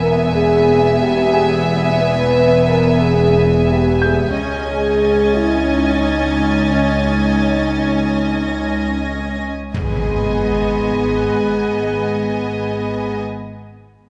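Drenched in scoring-stage reverb, this tense, uneasy cinematic suspense cue sets a pure, floating violin section melody over a darker, intimate second violin line, a close viola accompaniment, distant, roomy French horn chords and a bowed bass of cello and double bass sections, while a vintage grand piano lingers very quietly with long sustain until 9.8 s, a higher smooth-topped violin texture drifts in at 4.4 s, and round soft-mallet timpani and an electronic impact arrive at 9.7 s.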